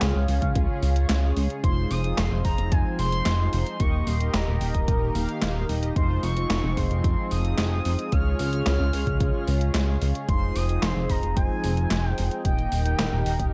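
Romantic and dreamy, this synthwave excerpt moves at 111 BPM in a straight 4/4, cycling through Db, Fm7 and Eb chords across its 13.5 seconds. An expressive synth lead carries the melody, its smooth sawtooth-and-triangle tone colored by vibrato, a lush chorus and delay. Beneath it, a swirling, detuned analog pad holds sustained chords through phaser and chorus with a sidechain pump, while mellow synth brass adds round, brassy stabs with a cassette-tape tint. A glossy, up-front synth bass built from pulse and sawtooth waves anchors the low end, also pumping against the sidechain. An 80s digital drum machine supplies handclaps, hi-hat and a gated-reverb snare with some overdrive, joined at 0.4 seconds by a punchy, layered electronic kick. The production is dark and warm with light reverb.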